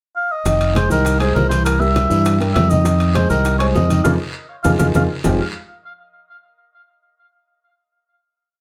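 A close-miked oboe with light vibrato and tape echo opens this driving, fiery Afro-Cuban jazz piece in F minor at 200 BPM with a pickup at 0.2 s, before an up-front, bright fingered electric bass plays a tumbao that anticipates the chords, an intimate baby grand with audible action noise plays a montuno in octaves, and low-tuned congas with slaps and open strokes, very quiet bongos in steady eighths with hand bell, ringing timbales on shell and bell, raspy guiro and grainy maracas push underneath, with a drum fill and band accent from 4.1 s leading to a closing Fm9 chord at 5.2 s, heard from further back in a moderate studio reverb.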